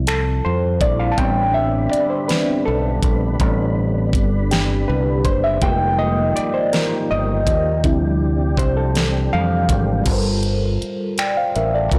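Late-night and yearning, this slow six-eight R&B excerpt in A minor moves at 54 BPM. A gritty, overdriven reed electric piano played through a combo amp carries a solo up front until 10.1 seconds over a round, direct fingered bass with tube saturation and a produced drum kit of knocking kick, fat soft-clipped snare, finger snaps, hi-hat and crash. From 1.2 to 10.0 seconds a clean tonewheel organ holds sustained chords with key click, chorus vibrato and a slow rotary speaker, while the chords drift through minor elevenths from Dm11 to a closing Gm11 in a blown-out, overdriven recording with light reverb.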